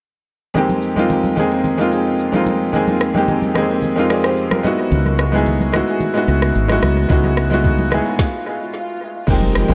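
Deep and late-night, this amapiano excerpt sets a clear, worn grand piano with analog delay over a produced R&B drum kit with a soft kick and woody snare, while damped congas sit in the background; a hollow, punchy fretless bass joins at 4.9 s, and after an electronic swell rising from 7.9 s and a stop at 8.2 s, an impact lands at 9.3 s as shimmering string-machine violins with sidechain pumping and a dark, round log drum bass arrive in an echo-heavy mix.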